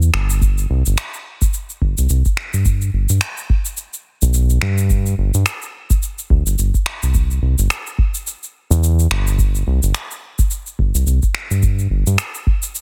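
A loose 16th-note swing at 107 BPM in 4/4 drives this blissful, smooth sunset chillout groove in C major, cut from a longer piece. An electronic shaker and finger snaps, layered and overdriven with soft clipping on the snare and re-recorded in a large room, sit from the start alongside a round analog bass, joined at 0.4 seconds by a dry, deep, overdriven electronic kick placed up front. The bass, dark and evolving with a fast attack and sustained notes, moves between G1 and G2 until 12.2 seconds, all in a dense, heavily limited modern mix with little reverb.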